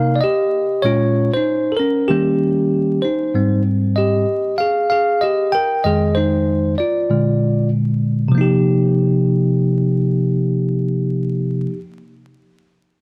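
Nocturnal and mellow, this hip hop piece, cut from a longer work, sets a lone tine electric piano up front, its bell-like, bright, clean tone heard through built-in speakers, swinging lazily over a Cm7 to Abmaj7 to Bb7 progression inside a moderate echo chamber reverb, with dark production and vinyl crackle lending it late-night haze.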